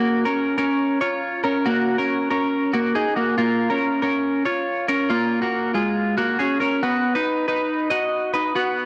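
A lone twelve-string electric guitar plays throughout this 8.9-second indie pop fragment, bright, twangy and compressed, picked cleanly and sitting up front with a cassette-tape tint. At 139 BPM in a straight 4/4, the music feels restless and wistful as it moves from Eb minor to Bb minor and then B. A moderate spring reverb and digital ambience frame the home cassette recording.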